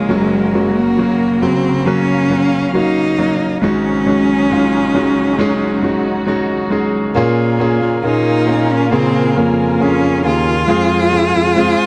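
A rich, bowed cello sings the tender, emotional melody of this 68 BPM pop ballad excerpt over clear concert grand piano and a veiled, con sordino string section in the distance, and a subtoned baritone saxophone with scooped, jazz-style notes joins on bass at 7.2 seconds as the chords move from Gb through Bbm7 to Fm, all in a dark, warm, lightly reverberant studio room.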